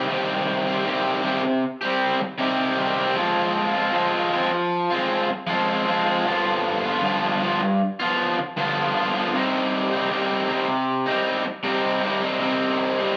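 A raw garage electric guitar carries this brief rock passage on its own for its full 13.2 seconds, its bright, overdriven tone picked and double-tracked so it sits thick and up front. The mood is brooding yet cathartic, moving at 78 BPM in a straight 4/4 feel in C minor. The guitar spans G2 to G4, tracing a progression from Cm to Fm, then G7 at 6.3 seconds before settling back on Cm. A moderate reverb from a large studio gives the sound a sense of space, and the performance was captured live in a single room, adding an immediate, unpolished edge. Cut from a longer piece, it feels like a moody fragment of something larger.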